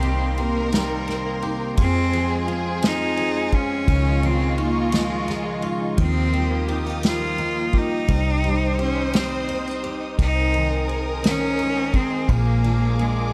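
A dry, dark and warm production frames this heartfelt, romantic six-eight pop ballad, cut from a longer piece. Up front, a biting, nasal solo cello carries the melody with vibrato and an airy bow, while a smooth symphonic violin section adds a second line and a woody studio string section holds lush sustained chords. Underneath, a full-bodied, double-tracked fingerpicked jumbo acoustic guitar, a compressed clean electric guitar playing arpeggios in the background, a round, foam-muted vintage electric bass and a small-room acoustic drum kit played with bundle sticks (punchy kick, snare and ride cymbal) support the whole from the first second.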